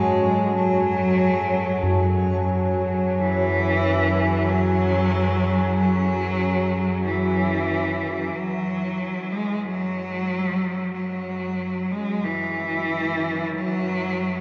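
Dark ambient drone at a slow 46 BPM in F# minor, cavernous and unsettling, in which a clear, smooth solo cello carries a narrow melody through delay over deep, chorused pad chords and a tense, bright, string-like drone with phaser and vibrato, while dry bronze gamelan-type gongs ring out metallic delayed arpeggios until 9.7 s, a very quiet reversed granular texture swells until 8.4 s, a synth drone fades in from 8.4 s, and a vast cathedral reverb surrounds it all.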